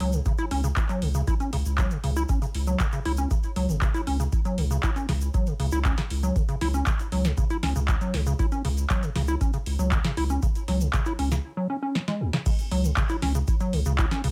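Set in a light reverb, this raw, trippy acid house cut from a longer piece moves at 118 BPM in a straight 4/4 in C# minor, with an up-front, squelchy, resonant square-wave acid bass riff carrying overdrive, sidechain pumping and dub echo over a deep, thick, saturated sine sub bass that also pumps. A booming analog drum machine supplies crisp snare, handclaps and metallic hats in a short room, plus crash cymbal, joined by a deep analog electronic kick and a grainy, mellow tube shaker sitting in the background. A break arrives at 11.4 seconds, a drum fill follows at 12.0 seconds, and the drop lands at 12.5 seconds.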